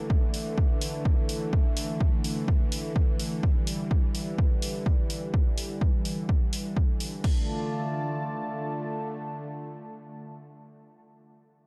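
Dramatic and melancholic, this melodic techno excerpt in D minor moves at 126 BPM in a straight 4/4, with a smooth, warbling analog pad holding sustained chords through chorus and sidechain pumping, from Dsus2 to Dm at 7.2 seconds, over a tense, string-like bowed drone with vibrato and its own reverb. A punchy, tape-warm electronic kick sits up front from 0.1 seconds, joined by an analog drum machine's hi-hat and crash cymbal, which pump against it, until both stop at 7.3 seconds. The production is dark and dry, with little reverb beyond the drone's.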